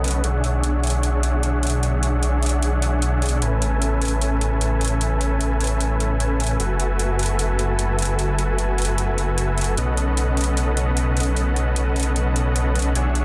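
Future bass at 151 BPM in a half-time feel with a light 16th-note swing, this emotional, lush excerpt moves through rich chords from E13/B to Amaj9, F#m11 and B9. A huge, compressed supersaw riff with vibrato and a sub octave sits up front through low-pass filtering and digital delay, while a thick detuned saw bass with chorus holds the low end and metallic, layered electronic hi-hats, re-recorded in a small room, tick along for all 13.2 seconds. Light reverb and a dense, heavily limited modern master give the whole a tightly packed sound.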